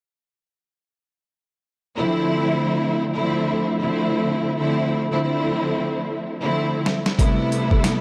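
Gritty and reflective, this boom-bap hip-hop fragment opens at 2.0 seconds on a lush, bowed string section with expressive vibrato and a smooth top, carrying a cassette-tape tint over a Dm9 chord. A pitched-down, compressed sampler-style drum kit with a thumpy kick, medium-tuned snare and hi-hat enters up front at 6.9 seconds, its overdrive adding grit as a fill leads into Am9 at 7.2 seconds. A huge ambient reverb soaks the mix in a dreamy haze.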